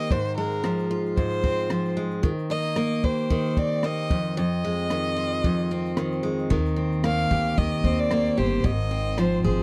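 Easy-going and sunny, this short acoustic pop excerpt moves at 112 BPM in 4/4 with a light sixteenth-note swing in Eb major. A clear, focused violin carries the melody up front, its bowed vibrato sitting close in the Bb4 to F5 range. A full-bodied, picked steel-string dreadnought with fresh strings supplies the accompaniment over chords moving from Ab6 through Eb6 and Fm7. A compact cocktail drum kit, dark and smooth with a punchy kick, rolled-off top and small-room sound, adds crash cymbal, rim click and shaker from 0.1 seconds. At 6.5 seconds, as a new section begins, a woody, thumpy pizzicato upright bass on gut strings enters low beneath the others. The sound is dry and close, in the manner of a 1970s studio recording with little reverb.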